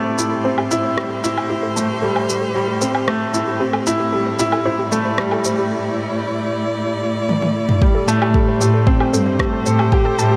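A woody upright piano riff sits up front from the first moment, over sustained chords from a dark, expressive string quartet whose bowed lines carry vibrato and portamento, all washed in a huge ambient reverb. A lo-fi pluck slips in just behind them, its detuned, warbling arpeggios kept in the background with chorus, delay and a pumping sidechain feel, while the piano carries its own digital delay. This passage of piano-and-strings electronica moves in a straight 4/4 with a deep house kit of rim clicks, shaker, toms and woodblock, giving it an intimate, cinematic build-up. A drum fill at 7.3 seconds leads into the drop at 7.8 seconds, where a deep, layered electronic kick arrives up front. From 8.1 seconds a rich, floating cello section takes the bass with a soft attack, bowed sul tasto, colored by tube saturation and sidechain pumping as the excerpt is cut off.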